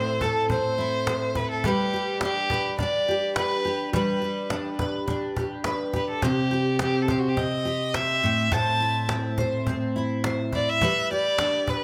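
A bowed violin and a fingerpicked steel-string acoustic guitar open this easy-going, sunny acoustic pop passage together, with a woody cajon joining at 0.1 s. The violin carries the melody as a single player up front, its tone warm yet biting, with vibrato, an even delivery and a smooth top, and a digital delay trailing its lines. Beneath it, the double-tracked jumbo guitar sounds full-bodied and close, with finger squeak audible as it plays the accompaniment. The cajon sits lower in the mix, acoustic and live-sounding, with faint snares. The harmony moves from Am to G, shifts to Cm at 6.2 s, and returns through Am to G, all in a small room with light reverb, and this piece is cut from a longer performance.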